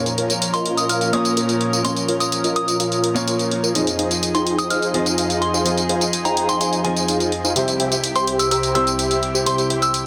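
A clear baby grand piano with tape echo, a thick, airy pad with chorus and a huge, detuned supersaw riff drenched in phaser, cassette-tape grit and low-pass filtering open this anthemic, euphoric festival progressive house excerpt, moving through Bbm, Fm7 and C. Electronic, layered hi-hat and tambourine sit up front from 0.1 seconds, and at 0.5 seconds a soft, pure FM bell melody enters high above, its mellow decaying notes carried by chorus, phaser and tape echo. A huge ambient reverb and a dense, heavily limited modern master give the passage its soaring, full-bodied sheen.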